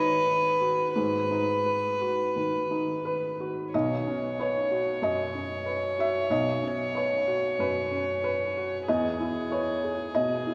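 A felt-muted upright piano and a single bowed violin open this intimate, tender neoclassical excerpt together, moving in a free, rubato 4/4. The piano sits up front with a soft, mellow, muted accompaniment spanning from deep bass to the upper middle register, while the violin floats in a close, narrow range, its sul tasto tone pure and rich with a gentle attack. A long, wet cathedral reverb, as in a church or concert hall, surrounds both players as the harmony drifts from G#m7 to Badd9 at 3.7 s and settles on Emaj7 at 8.9 s.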